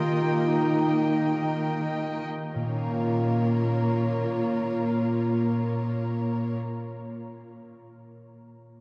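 In a rubato 3/4 at 54-65 BPM that slows through the opening 2.5 seconds, this short, sorrowful and bittersweet cinematic fragment in Bb dorian moves from an Eb chord to Bbmadd9 at 2.5 seconds. Rich, vibrato-laden bowed strings carry it: an up-front viola section in the accompaniment, a close violin section on a second line, and a cello section holding the bass in the background. A mellow solo clarinet adds a classical-style line from behind, and a bright, ringing, thumb-plucked concert harp spins arpeggios that outlast the others, sounding until 7.2 seconds within a wet cathedral reverb and a dark, warm production.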